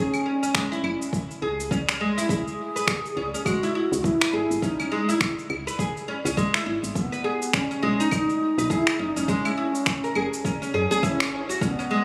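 Swung sixteenths at 103 BPM drive this meditative organic downtempo excerpt, where overdriven electronic claves, shaker and finger snaps sit up front over a deep, overdriven kick, a round, dark FM bass pumps under sidechain, a plectrum-plucked fretless oud plays tape-echoed arpeggios through a low-pass filter, a breathy, reedy low ney carries a close-miked melody with vibrato, and an electronic swell appears at 10.7 seconds, the whole set in a lush hall reverb and captured on a phone in the room.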